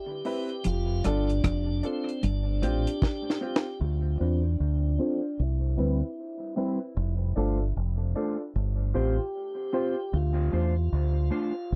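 A swung sixteenth-note groove in 4/4 drives this meditative, heavy dub reggae excerpt. A dry, muffled reggae drum kit with tight kick, high-tuned snare, rim click and hi-hat plays a break that ends in a fill and stops at 3.8 s, while a round, punchy fingered bass sits up front beneath it all. A piping, lightly overdriven tonewheel organ carries the melody through a slow rotary speaker and dub echo, a woody, slightly detuned upright piano adds filtered, echoing stabs, and a picked, compressed clean guitar riff with echo sits in the background early on. At 4.2 s a dark, chorused electric guitar takes up filtered, echoing accompaniment as a filter sweep runs to the close over a cycling Cmaj7, F6, G7sus4, Dm7 progression, all in a dry, close 1970s-style studio sound.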